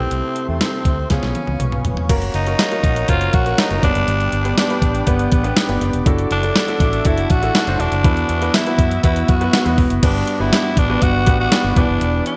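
A growling, breathy tenor saxophone carries the melody with a light vibrato over a clear, polished baby grand piano and a dark, foam-muted fingered electric bass, in a glossy, uplifting 1980s-style pop excerpt at 121 BPM. A clean 12-bit drum machine sits up front with a thumpy kick, medium-tuned snare, hi-hat, tambourine, crash, toms and gated reverb, playing a drum fill from 1.1 to 2.1 seconds, while a very quiet, detuned sawtooth pad warbles with chorus in the background. The bright digital production is bathed in a lush hall reverb as the harmony moves from F# through G, Dadd9/F# and Esus2 to Gmaj7 and Em7.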